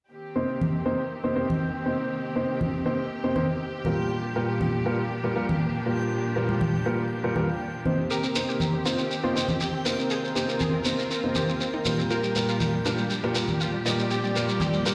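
A straight four-beat progressive house groove, dreamy yet driving, rides on live-room congas as muted, veiled strings hold sustained chords and a dark, mellow grand piano up front stabs through a filter sweep and tape echo, with a reversed granular texture swelling behind. At 8.1 s a thick, detuned unison lead with 12-bit sampler grit and delay takes the melody, a very quiet FM bell carries a second line, a punchy sawtooth pluck plays echoing arpeggios in the background, and a grainy shekere enters. The mix sits in lush hall reverb, heard through a big system in a bare stone room, over alternating Cm7 and Gm7/Bb chords.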